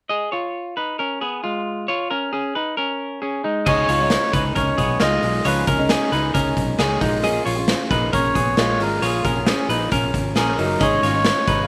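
Jangly indie pop with a nostalgic, youthful glow, opening on a bright, clean semi-hollow electric guitar playing arpeggios alone until 3.7 seconds, when a reedy, breathy melodica takes the melody over a picked steel-string acoustic guitar in the background, a round, foam-muted vintage bass and a gritty, saturated garage drum kit with a punchy kick, all heard fairly dry in this short excerpt.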